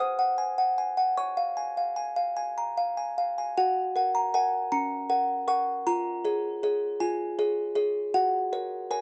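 A delicate, tinkling music box plays alone and up front through this dreamy, innocent classical lullaby in F# major, a short cut from a longer piece at 52 BPM in 6/8, its bright plucked notes ranging from C#4 to D#6 and moving into a second section at 3.6 seconds that settles on F# by 8.1 seconds, all within a dark, dry production that keeps the small box close and intimate.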